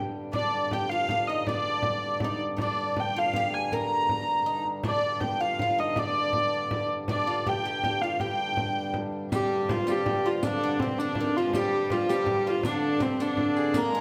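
A breathing, reedy pedal harmonium drone opens this ancient, mysterious medieval dance in G minor, joined at 0.3 seconds by a dark, nasal hurdy-gurdy carrying the melody up front, a bright, double-strung oud on a second line and a small frame drum, all in a straight 6/8 at about 107 BPM that gradually speeds up. At 9.3 seconds a gut-string fiddle adds a second line from the background alongside the bright jingles of a riq. The whole cut from a longer piece sits in a moderate recital-hall reverb.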